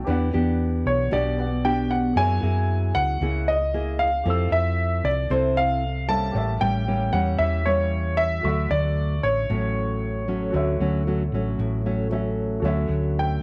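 A moderate studio reverb frames this relaxed, sophisticated bossa nova excerpt, cut from a longer piece. A thumb-plucked classical nylon-string guitar, a dark, round and punchy hollow-body electric bass, and a baby grand piano sitting in the background carry the accompaniment through Em7, F#9, Fmaj7, A7b9 and Dmaj7. From 0.9 seconds a concert grand piano takes the melody up front, intimate and natural with audible action noise, deep bass and a plate reverb.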